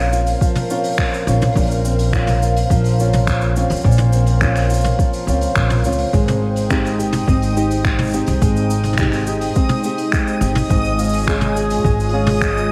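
Wrapped in vinyl crackle and light studio reverb, this intimate, wistful folktronica fragment at 105 BPM in Bb dorian sets a dark, fingerpicked nylon-string guitar playing delayed arpeggios over a woody, thumpy pizzicato upright bass, a warbling lo-fi pad of detuned, chorused sustained chords with vintage sampler grit, a brushed jazz kit of cabasa, finger snaps, hi-hat and toms, and a soft overdriven electronic kick, while a reversed, granular swelling texture adds a bright, dreamy layer from 6.9 s as the harmony moves from Bbmadd9 to Abmaj7 and Db/Ab.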